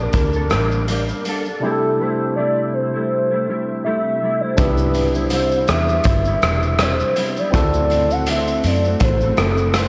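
Sunny and nostalgic, this short bedroom-pop and indie-pop cut drifts along with a lazy swing, led by a warbling, detuned synth lead soaked in tremolo and chorus over a barky, lightly overdriven tine electric piano and a mellow, chorused electric guitar with a gentle pitch drift. A round, foam-muted vintage bass anchors the low end, while a gritty, saturated garage drum kit with a punchy kick sits up front, the drums entering at 0.1 seconds with hi-hat, rim click and shaker. At 4.6 seconds the harmony brightens into a new section where a jingly tambourine slips in very quietly beneath a light reverb.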